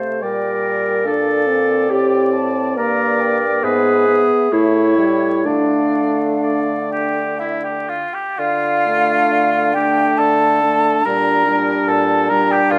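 Vinyl crackle sits beneath a moderate recital-hall reverb in this short, solemn and yearning fragment of a slow romantic movement for wind quintet. It moves at about 60-73 BPM in 3/4 with a rubato feel in D minor. A hollow, close-miked silver flute carries the melody with vibrato and tongued notes, while a distant, roomy oboe traces a second line beneath it. A clear French horn with light vibrato and a mellow clarinet, which enters at 0.2 s and sounds loudest of the group, fill in the accompaniment, and a soft-attack bassoon plays the bass. The harmony passes from Gm/Bb through Gm, E/G# and A7 to Dm at 5.5 s, and a new section begins at 8.4 s before Gm/Bb returns near the close.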